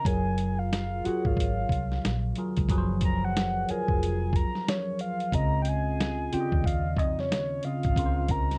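A swung sixteenth-note groove at 91 BPM drives this short neo-soul R&B excerpt, with a gritty, compressed sampler-style kit of thumpy kick, medium-tuned snare and hi-hat sitting up front beside a dark, foam-muted fingered electric bass that is round and punchy. A worn, slightly out-of-tune tine electric piano with phaser lays down the harmony in Gb lydian, moving from Gbmaj9 to Dbmaj9 at 5.3 seconds. Over it, a soft octave-layered synth lead with a sub octave, vibrato, chorus, phaser and slapback echo carries a mellow, sustained melody, giving the dry, sensual track a warm glow.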